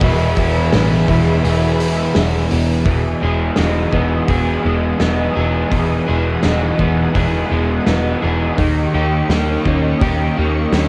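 This hazy, blissful shoegaze and dream pop cut opens with the full band at once in E major at 84 BPM: a loose, roomy indie drum kit with a tight kick and rolled-off top, a dark, round, punchy overdriven bass up front, and a dark hollow-body guitar riff bathed in reverse reverb. Two crunchy overdriven guitars sit in the background, one double-tracked and the other given an analog chorus, alongside a silky, bright string pad of slow-attack sustained chords with ensemble chorus. The harmony moves from E to Emaj7 at 2.9 seconds and then to D#7 at 8.6 seconds, and the whole short passage has the small-room, cassette-tape haze of a home recording tuned slightly flat to A4 = 436 Hz.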